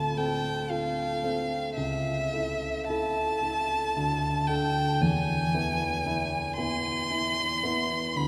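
A drenched cathedral reverb, ringing for 6.0 seconds, surrounds this brief romantic classical excerpt for violin and grand piano, tuned to A4 = 435 Hz. At a slow, rubato 57 BPM in 3/4, a single close, focused violin, bowed with vibrato, carries an elegiac melody between E5 and C6, while the warm, natural grand piano sits up front beneath it as accompaniment. The melancholic harmony moves from Dm7 through A/C# and D5 to E across the 8.3 seconds.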